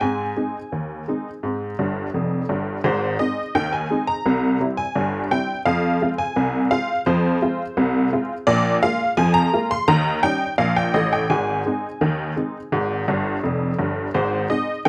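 Closely miked with light reverb, this short, lively cut of jaunty ragtime features a solo honky-tonk upright piano, detuned, jangly and up front, playing in Ab major at 85 BPM in a straight 2/4 across a range from F1 to C6, tuned slightly flat with A at 438 Hz, moving through C, F minor and Eb7 back home to Ab, with bright fills at 1.8 seconds and again at 13.1 seconds.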